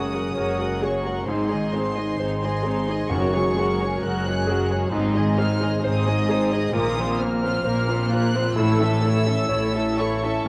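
Cinematic orchestral music, hopeful and uplifting, moves at a slow, rubato 66 BPM in this short cut from a longer piece. Two violin sections play sul tasto with a soft attack and a floating, pure tone, one carrying the high melody while the other adds a second line beneath it, and a dark, woody viola section with vibrato fills the background. A rich cello section and a distant double bass section hold the bass, while a smooth, vintage grand piano sits behind the strings and a very quiet concert harp rings out fingerpicked arpeggios. Soft-mallet timpani with a round tone sound faintly until 4.4 seconds. The harmony moves from Gbadd9 through Ab and Bbsus2 before landing on A, and the whole recording carries a wet scoring-stage reverb and the warbling pitch drift of worn cassette tape.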